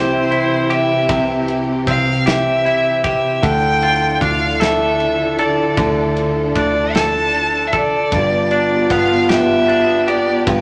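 A bowed solo violin carries the heartfelt melody up front, with a mellow French horn section on a second line, a bright, twangy clean electric guitar picking the accompaniment, a lush symphonic string section sustaining chords in the background and a punchy fingered electric bass underneath, moving through C, Dm and G. At 0.3 seconds an acoustic drum kit joins with a punchy kick, medium-tuned snare and ride cymbal. This swaying six-eight pop ballad in C major moves at 51 BPM, set in a wet studio reverb, with the violin's smooth vibrato and the strings' expressive portamento standing out.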